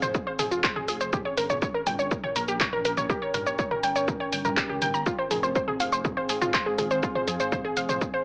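Dark and cinematic, this short melodic techno excerpt moves at 122 BPM in F minor, shifting from Fm to Gdim at 1.1 seconds and back at 5.1 seconds. An up-front, lush unison pluck plays wave-folded sawtooth arpeggios with a filter sweep, cassette tape grit and tape echo, over a deep, rumbling detuned saw bass with tube saturation and a mellow, warbling tape-like pad with chorus and its own reverb, all three pumping to the sidechain. A heavy, layered electronic kick sits at the front beside a punchy analog drum machine of handclaps, hi-hat, shaker and toms, and the whole mix has the narrow, filtered character of AM radio in a moderate digital room.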